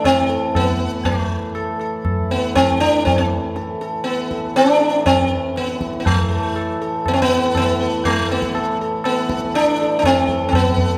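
A five-beat cycle carried by a low-tuned, close and dry tabla underpins this longing, meditative Hindustani passage in raga kafi, where an up-front sitar sings a bright, buzzing melody ringing with sympathetic strings over a reedy, breathing pedal harmonium drone, all bathed in a church-like reverb, with a new section arriving at 6.1 seconds.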